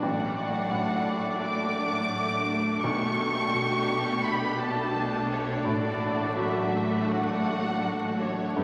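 Unfolding in a rubato 4/4 around 84 BPM, this hopeful, moving cinematic fragment in D major sets a lush, vibrato-rich violin melody up front over a softer second violin line, distant viola and dark French horn chords, a felt-muted upright piano, very quiet ringing harp arpeggios, and a bass of portamento-tinged cellos and double basses, all bathed in a wet scoring-stage reverb with a faint vinyl crackle as the harmony moves from D/A to Gadd9/B at 2.8 seconds and back at 5.7 seconds.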